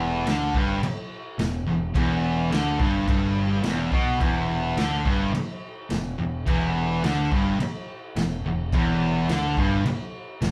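A straight, steady 4/4 drives this menacing, raw garage rock fragment, cut from a longer piece and played live by a small band in one room with a wet, short reverb. A thick, double-tracked fuzz guitar sits up front with a low distorted riff over a single E minor chord, joined from the start by a growling, bright picked electric bass with overdrive. The acoustic drum kit comes in at 0.3 seconds with crash cymbal, a boomy kick and a medium-tuned snare, its sound gritty, saturated and rolled-off on top, with a pumping room character.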